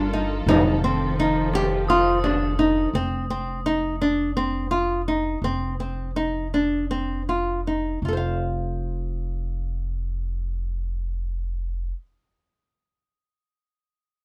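A fingerpicked nylon-string guitar runs through this short cut from a longer contemporary chamber piece, its small, up-front arpeggios carrying a hopeful yet restless mood. The music moves in an uneven 7/8 at 167 BPM counted in eighths, centred on F mixolydian, with the harmony shifting from F7 to F5. Beneath it, an upright bass plays woody, growly pizzicato low notes, while a distant frame drum adds small, bright percussion in a large room near the opening. Muted con sordino strings hold veiled, lush chords with vibrato and soft attacks until 2.9 seconds, and crotales struck with plastic mallets shimmer in the background from 1.9 seconds. The tempo then slows until 8.0 seconds, and the recording sits in light reverb.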